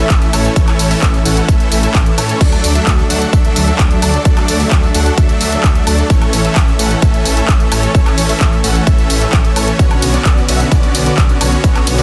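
A dense, heavily limited master opens this triumphant, euphoric festival progressive house excerpt at 130 BPM in A major, where huge, bright supersaw chords with cassette-tape colour, tape echo and sidechain pumping carry the riff over A, D and Bmadd9. A thick, menacing detuned saw bass also pumps beneath them, while a punchy, up-front electronic kick and a layered big-room kit of crash, ride, hi-hat, handclaps, tambourine and woodblock sit in studio reverb from 0.1 seconds, and a very quiet, dark bowed chamber string section sustains chords underneath.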